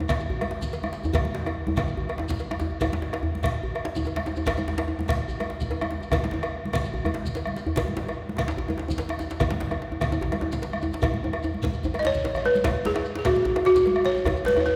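A straight 4/4 groove at 146 BPM that keeps speeding up drives this powerful, festive West African drum ensemble excerpt in B major pentatonic, where two djembes, a round, vintage-toned bombo up front, bright thin-skinned congas, a metallic cowbell and a grainy shekere fill a church-like reverberant space, a drum fill runs from 11.0 to 12.7 seconds, and a woody, buzzing balafon played with rubber mallets enters up front at 12.0 seconds for the closing moments.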